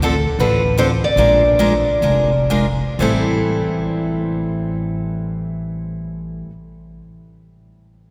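Drenched in a cathedral-like reverb, this short cut from a longer swinging, bittersweet jazz manouche piece sounds as if it was captured in a church or concert hall. A bright, up-front picked steel-string guitar carries the melody over a second, warm picked guitar's accompaniment, with finger squeaks audible on both, while a woody, thumpy upright bass on gut strings adds a dark pizzicato low end. The swing eases as it slows through the opening 3.0 seconds over Dm7 and Bb7, then settles onto Am7 for the closing passage.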